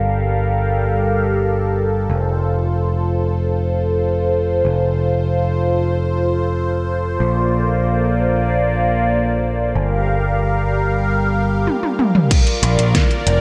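Bathed in a lush digital hall reverb, this nocturnal, driving synthwave excerpt drifts in free time over a swirling, detuned sawtooth pad, phased, chorused and pumping against a sidechain, as a filter sweep runs through it across Gm7, F and Bbmaj7 chords. Beneath it a growling, overdriven picked electric bass holds the low end through a low-pass filter, and at 11.7 seconds a pop drum kit with a fat snare, metallic hats and gated reverb enters with a fill. At 12.3 seconds a punchy, up-front electronic kick joins as the harmony settles on Bb.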